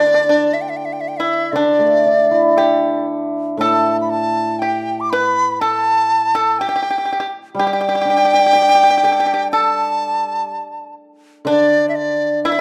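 Set in a dark, warm production with a moderate 1.5-second recital-hall reverb, this graceful, pastoral excerpt of Chinese traditional chamber music in D zhi mode moves freely in rubato at about 61 BPM, tuned to A4 = 443 Hz. A large dizi carries the melody up front, airy and bright with its bamboo tone and buzzing membrane, a soft attack and expressive vibrato, while the pipa plays a dry, percussive second line with fingerpicks. Beneath them the hammered dulcimer provides shimmering, ringing accompaniment, and all three parts sound together for the full 12.6 seconds.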